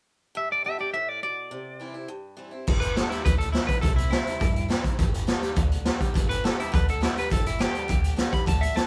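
A live-in-one-room sound with light reverb frames this upbeat, retro rockabilly clip in G major at 207 BPM, where a bright, boxy picked acoustic guitar and a twangy, slightly broken-up electric guitar lead carry the opening over G and C before a woody, thumpy upright bass and a gritty, saturated garage drum kit with a boomy kick, crash, hi-hat and snare join at 2.7 seconds.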